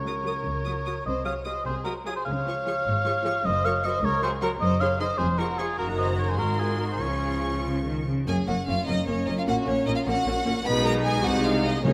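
Rolling in a lilting 6/8 at 101 BPM, counted in dotted quarters and played with a rubato give to the pulse, this lively, spirited classical-period movement for symphony orchestra is cut from a longer piece. A violin section carries the melody high in a rich, focused voice. Beneath it, a second violin section and a viola section fill in with smooth, even bowed tone, each with vibrato, the violins adding a lush sheen. An up-front solo oboe with light vibrato adds a warm second line until 7.6 s, while bowed cellos and double basses hold the bass with a rich body, the cellos close, and timpani with calf heads and medium mallets strike dry notes at the very start and again at the final moment. At 8.3 s the key moves from D-flat major to F-sharp major, and a mellow French horn section enters in the background with sustained chords, all set in a moderate scoring-stage reverb.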